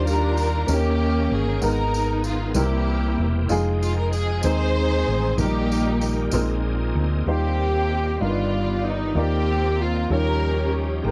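Slow gospel in 6/8 at 64 BPM in Eb major, jubilant yet reverent, with a lush, bowed string section carrying the melody up front over a woody upright piano with audible action noise and a round, punchy hollow-body electric bass. A shouting tonewheel organ holds sustained chords in the background through a slow rotary speaker with chorus vibrato, while a jingly tambourine plays until 6.6 s and a breathy alto saxophone with light vibrato joins the strings on the melody at 7.3 s. The dry, close 1970s-style studio sound keeps this short cut from a longer piece intimate, its rich harmony moving through chords like Ebmaj9, Fm9 and G7b13.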